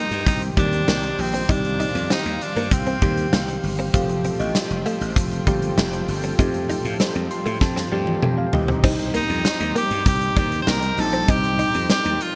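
An edgy, forceful tenor saxophone opens this urgent, dramatic 1980s-style pop excerpt in C dorian, up front over soft, round electric-piano-like synth keys with chorus, a smooth, detuned analog pad shimmering with chorus and tremolo, and a clean, compressed guitar riff, recorded direct and set back in the mix under ensemble chorus and delay. A growly, punchy slap bass and a huge arena drum kit, with bright cymbals, a medium-tuned snare, a punchy kick, tambourine and toms in a pumping hall sound, drive a straight 98 BPM groove in 4/4. A ringing, inharmonic FM chime enters quietly in the background at 3.3 seconds, trailing ensemble chorus and delay, and the saxophone, full of vibrato, drops out just before the harmony moves from Cm to Fadd9. A synth keys fill and a drum fill carry the music as the chords return to Cm, leading into the next section, where the saxophone comes back at 9.2 seconds. 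Light reverb gives the whole mix a touch of space.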